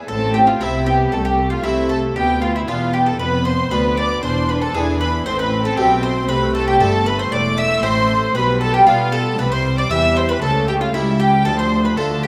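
A wet, resonant scoring-stage reverb surrounds this stormy, dramatic baroque-style concerto excerpt in A minor at 116 BPM, its period-style gut-string sections bowed with light vibrato. A close, reedy upper violin section carries the melody high above while a woody, picked mandolin with double strings plays a melodic line of its own in a lower register. A darker, distant second violin line, a background viola section, a smooth-topped cello section and a rich double bass section fill out the harmony and low end, with a brilliant Flemish-style harpsichord sitting in the background as the chords move from Am through Bdim and E5 toward Dm at 11.5 seconds.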